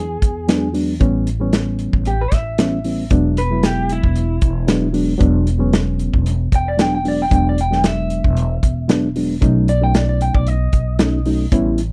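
Straight-eighth soul blues at 114 BPM in 4/4, this short cut from a longer piece moves with a laid-back, swaggering gait in E mixolydian, with a light swing on the sixteenths. A tight, up-front acoustic drum kit with a medium-tuned snare, snug kick and rolled-off top drives it from 0.2 seconds on hi-hat, kick and snare, its booth sound pumping with the room. Beside it, a woody, pizzicato upright bass with steel strings stays close and present in its low register. A mellow, reedy electric piano, clean through its built-in speakers and colored by phaser, carries the accompaniment over a progression from E7 to A7, back to E7, and on to B7 near 9.4 seconds. On top, a slightly broken-up, lo-fi electric guitar through a small old amp plays the picked melody with phaser, sitting a touch lower than the other parts. The whole sound is dry and intimate, with a soft, warm glow.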